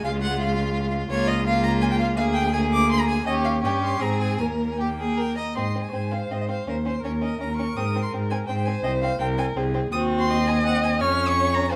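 Spirited and graceful, this quick classical-period string quartet movement in Ab major moves at 166 BPM in 3/4 with a flexible rubato feel. A rich, distant first violin carries the high melody over a second violin line set equally far back, while a clear-toned viola accompanies and an up-front cello holds the low bass, all four bowed by single players with focused vibrato tone, captured by close, detailed microphones in light reverb across this 11.8-second fragment cut from a longer piece.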